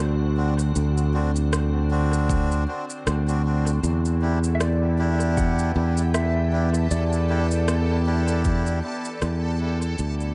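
This meditative, spacious piece of ambient dub at 78 BPM in E minor is cut from a longer work. It opens with a soft, organ-like pad holding sustained chords in the background, its pure tone thickened by ensemble chorus, beside an up-front, bright fingered electric bass sitting low on D2 to E2. A reedy, breathy melodica adds short stabs sent into dub echo, while an overdriven electronic shaker and rim click carry a lightly swung sixteenth-note feel. A deep, layered electronic kick joins at 2.3 seconds, and around 3.8 seconds the harmony moves from D7 to Em7 as a reversed, granular texture rises in, dreamy and swelling. A clean, twangy lap steel then sings a brief slide melody through echo, and the whole echo-heavy mix fades out from 7.9 seconds.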